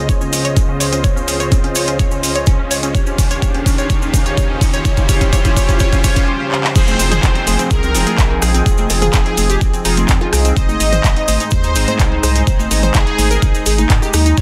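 A dense, heavily limited mix opens this bittersweet, emotional progressive house piece in F minor at 126 BPM, where a chorused, warbling analog pad, a detuned analog pluck with cassette tape character and tape echo playing arpeggios, and glossy polysynth stabs build under filter sweeps, a background riser and downlifter, a cabasa and a pop drum kit with metallic hats and handclaps, all driven by an overdriven, knocking kick drum, until a short break gives way at 6.8 seconds to a drop where a smooth, phased supersaw melody with 12-bit sampler grit and a round, deep analog bass join, followed a moment later by background electronic congas, toms and bongos, with the sidechained parts pumping to the beat.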